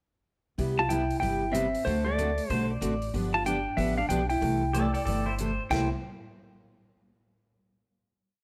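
An up-front, twangy lap steel carries motif-based song phrases through this short, cheerful, down-home western swing piece at 188 BPM in C major, shadowed by a hollow-body archtop playing a dark harmony line mostly in thirds, with a bright pedal steel entering at 2.5 s to add volume swells and answering blues licks, all over picked four-to-the-bar rhythm from a full-bodied dreadnought acoustic, a woody upright bass playing two-beat root and fifth with walk-ups, and an airy, polished big-band kit keeping time on the hi-hat with a punchy kick, set in a moderate echo-chamber reverb before a final chord at 5.7 s.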